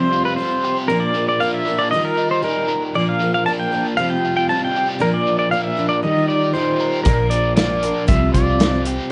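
A clean pedal steel played with fingerpicks carries the hopeful melody with slide, volume swells, plate reverb and digital delay over a shimmering, octave-doubled twelve-string acoustic and a bright, overdriven, double-tracked electric guitar riff with harmonic tremolo, before a punchy small-room country drum kit enters at 7.0 s and a dark, round, foam-muted electric bass at 7.1 s, in this jangly folk rock and heartland rock excerpt at 117 BPM in 4/4 that cycles Fsus2/C, Bb and Ebadd9 through a worn, warbling cassette sound with pitch drift and a dulled top end.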